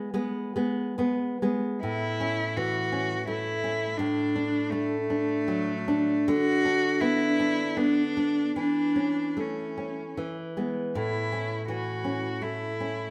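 A clear, smooth cello sings a lyrical bowed melody with vibrato and an even, close tone, entering at 1.8 seconds over warm, fingerpicked nylon-string classical guitar that opens alone, both up front in this romantic A major duo played live in one room, moving in a rubato 3/4 at 68-85 BPM through a wet stone-room reverb as the chords pass from E back to A near the end of this fragment of a longer piece.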